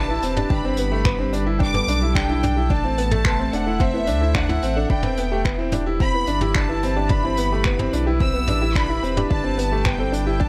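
A distant, floating violin section carries the melody over a reedy, gut-string quartet holding sustained chords, while a bright, woody upright piano riff sits up front beside a round sine sub bass with sidechain pumping. Soft, dark pluck arpeggios with chorus and tape echo sit in the background of this cinematic, intimate piano-and-strings electronica, cut from a longer piece, as the chords move between Em and Gadd9. A brushed kit with finger snaps, hi-hat and toms comes in at 0.2 seconds, and a deep, layered electronic kick joins at 0.5 seconds, all under light studio reverb.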